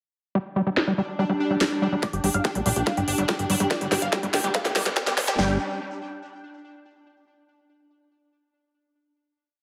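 A gritty, squelchy acid bass opens this short, intense psychedelic trance piece at 0.3 s, its resonant three-step loop drifting against the bar. It is soon joined by a pulsing, detuned gated texture holding a bright high note, a drum and bass kit with a cracking snare and crisp hats, and a very quiet riser. At 2.0 s the build begins: a big-room kit adds a punchy four-on-the-floor kick and huge snare, a phased supersaw stab repeats a sixteenth-note riff over a pedal note, a plucky analog bass rolls beneath, and filter sweeps move across the synths, all within a heavily compressed, radio-like sound and wet digital room reverb that make the mood feel alien.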